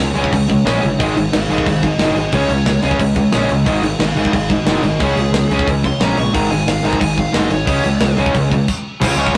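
A rough rehearsal-room sound with stone-room reverb frames this energetic, rowdy punk rock excerpt, where a bright distorted electric guitar and a raw garage guitar in the background churn out riffs over alternating Db5 and Ab5 chords. A punchy fuzz-laden picked bass drives underneath, a tight metal drum kit with crash, kick and snare joins at 0.2 seconds, and a dark, smooth overdriven lead guitar solos in the background before a stop at 8.7 seconds.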